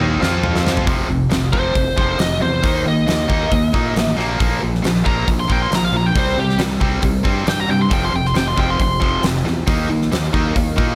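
A straight 4/4 hard rock groove drives at 136 BPM, kicked off by a drum fill on a huge arena kit with a punchy kick and fat snare, alongside a growly fingered bass and two tight, distorted rhythm guitars riffing in the background. A raw, double-tracked garage guitar and a very quiet, moody analog pad with a slow attack open the cut, the pad returning near the end, while a biting, overdriven lead guitar with tape echo takes an up-front solo from 1.5 to 9.2 seconds. The mood is swaggering and energetic, set in a light reverb, in a passage cut from a longer piece.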